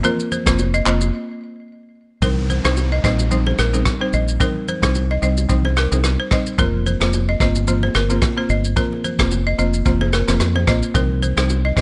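Afrobeats excerpt in C minor at 110 BPM with a lightly swung sixteenth feel, hypnotic and mellow, built on a buzzing, woody marimba accompaniment and a dry, close-miked balafon riff carrying digital delay, over a punchy brush kit with handclaps, rim click and shaker plus congas and bongos tucked in the background. A dark, round fingered electric bass sits up front from 0.5 seconds, a brief break falls between 1.1 and 2.2 seconds, and a very quiet electronic downlifter runs from 2.2 to 6.6 seconds as the chords move between Fsus4 and Cm. The small room gives a boxy, mid-forward sound with a rolled-off top.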